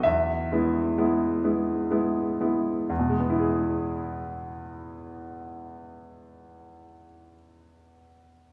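An E major chord on a clear grand piano opens this short passage at 0.1 s, and the tempo slows over the first 2.9 seconds. It is a romantic classical character piece for solo piano, played in 3/4 with a free rubato feel at roughly 59-67 BPM. The mood is warm and passionate. The piano sits up front with a smooth, vintage tone and short sustain, spanning E2 to E5. It rings in a wet church or concert hall reverb with a 1.7 s decay. After the slowing opening, a new section begins at 2.9 s and carries on until the passage, cut from a longer piece, ends at 8.5 s.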